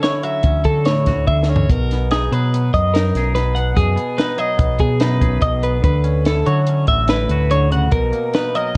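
A cassette-tape recording with light reverb and small-room ambience carries this wistful, playful math rock and midwest emo excerpt in 5/4 at 145 BPM, where a bright, compressed twelve-string electric guitar plays up-front arpeggios over a twangy, scooped electric guitar accompaniment, a compact cocktail drum kit with a high-tuned snare and rolled-off top adds a fill at 1.3 seconds, and a growling, overdriven fingered electric bass enters at 0.4 seconds, up front and punchy, beneath chords moving from Dmaj9 to B6 and back before closing on Bmaj7.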